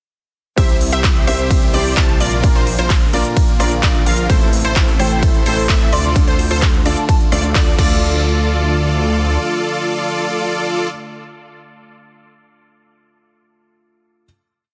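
Emotional and euphoric, this short festival progressive house piece in D minor at 129 BPM launches straight into a drop at 0.6 seconds over a C, Bb, Am, Dm progression. A punchy, up-front electronic kick drives four-on-the-floor beneath an overdriven big-room kit of crisp hats, claps, rim, ride and crash, while a huge, dense supersaw riff, bright detuned plucked arpeggios and a thick chorused saw bass all pump with sidechain, and a very quiet lush pad and a soft, felt-muted upright piano sit in the background. A pure, woody baroque flute with sampler grit and dub echo adds brief phrases from 5.0 seconds, before a final hit at 8.0 seconds lets the dry, heavily limited mix ring out.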